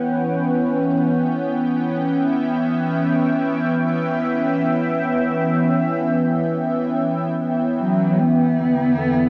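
In free time, this short ambient excerpt in E dorian rests on an up-front analog pad, smooth and detuned with a soft attack, chorus and a moving notch, holding an Em69 chord before shifting to Em7 at 8.2 seconds. A dark, woody bowed cello with vibrato and a cassette-tape colour enters up front at 7.8 seconds, while a round, deep analog bass sits in the background from 8.2 seconds and a bright, barky tine electric piano adds brief arpeggios at 9.0 seconds. The reflective, serene mood is framed by a wet small room on a home cassette recording.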